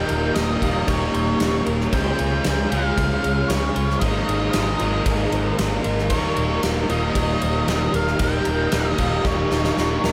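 Shoegaze and dream pop rock with a blissful, dreamy mood, this brief excerpt is soaked in a huge ambient reverb as an octave-fuzz lead guitar carries a dark, distorted melody through analog delay. Two overdriven guitars, one biting with subtle chorus and one crunchy with reverse reverb, play riffs beneath a very quiet, twangy twelve-string electric guitar picking arpeggios, while a deep, moody sawtooth pad holds sustained chords in the background. A round, foam-muted vintage electric bass and a gated 80s drum kit with bright cymbals and a tight kick anchor the groove, closing with a drum fill at 9.3 seconds.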